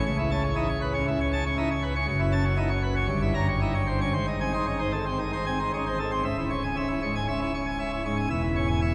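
This classical organ toccata moves at 117 BPM in a straight 4/4, its C# minor harmony sounding majestic and dramatic. A single pipe organ plays solo on a full plenum with mixtures, its brilliant, baroque voicing sitting up front and spanning from C#1 to Bb5, while a crisp chiff marks the onset of the pipes. The harmony passes through F#m7, Gdim7 and G# before settling onto C#m at 6.3 seconds, where a new section begins and carries through to the close at 8.9 seconds. A cathedral reverb with a 5.9-second decay surrounds the organ, giving a church or concert-hall spaciousness, and vinyl crackle lies beneath the sound. The passage is cut from a longer piece.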